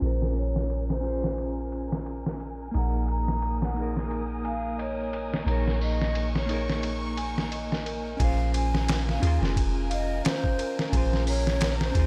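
A dark, melancholic trip hop piece in Bb minor moves at 88 BPM with a lazy 16th-note swing, heard here as a short passage cut from a longer work. A gritty, pitched-down sampler-style drum kit with a thumpy kick and medium-tuned snare sits up front, its whole sound muffled by a low-pass filter, while a soft, round 808-style bass with tube saturation anchors the low end. A clean, fingered electric guitar carries the accompaniment through tremolo and 12-bit sampler grit, its tone shaped by a filter sweep until 8.2 seconds, where the harmony returns from Absus2/Bb to Bbm7. Over this, a breathy, hollow concert flute sings the melody close to the ear with tape echo trailing behind, and a lush violin section holds bowed chords with vibrato and portamento in the background. From 2.7 seconds a bell-like celesta adds delicate arpeggios through digital delay, and the dry, filtered mix keeps the mood hazy and intimate.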